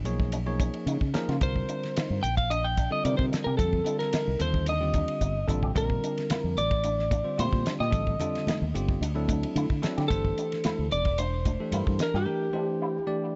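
Intense and driving, this short electric jazz fusion excerpt puts a round, mellow fretless bass and a dry 70s drum kit with a fat snare up front, under bell-like tine electric piano chords and twangy envelope-filtered guitar stabs treated with ensemble chorus and tape echo in the background. A slightly broken-up, compressed lead guitar carries the melody from 1.4 s, and hard-handed, high-tuned congas join at 5.8 s after a drum fill at 5.2 s. The dark production keeps reverb to a minimum.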